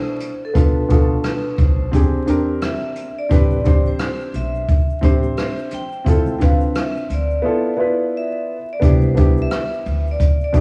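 Brushed jazz drums sit up front in this cool jazz-hop excerpt at 87 BPM in C major, with a boomy kick and rim clicks in a roomy small-room sound, while a woody pizzicato upright bass plays in the background. A bright, ringing vibraphone with slow motor vibrato carries the melody over intimate, smooth grand piano chords moving from Cmaj9 through E7alt and Am11, the piano's action noise audible and its sound carried on cassette tape, with vinyl crackle over the whole recording. Very quiet egg shaker and hard-handed congas join at 3.3 seconds, and a break arrives at 7.4 seconds before Cmaj9 returns at 8.8 seconds.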